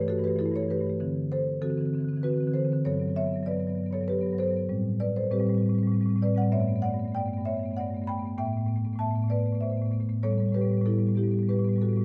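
A marimba played with medium mallets carries this playful contemporary classical piece alone in a straight three-four, its woody rosewood tone sitting up front and ranging from G2 to B5. The harmony moves through rich extended chords such as Gmaj9, Am11 and Asus2, giving the short passage a warm character. A moderate recital hall reverb and a dark production surround the instrument, and the music is cut from a longer piece.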